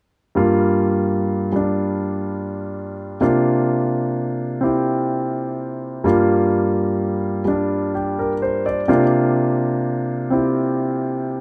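Solo jazz at a relaxed, sophisticated 84 BPM in 4/4, swung on the eighths, this short cut from a longer piece features a concert grand piano alone from 0.4 to 11.4 seconds, ranging from G2 to D5. The piano sounds clear, intimate and polished, up front with deep bass, long sustain and audible action noise, set in moderate studio reverb. The harmony alternates between Gm7 and C9sus4, with the C9sus4 arriving at 3.2 and 8.9 seconds.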